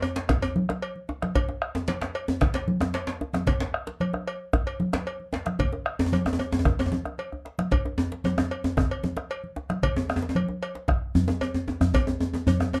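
A dark, slightly lossy recording in a small, lightly reverberant room carries this earthy, festive West African traditional drum ensemble in straight 4/4, where a deep bombo, a metallic cowbell, a dry, hard-handed djembe, a second djembe with metal rattles sitting up front and bright, thin-skinned congas play throughout, broken by a short drum fill at 7.3 seconds.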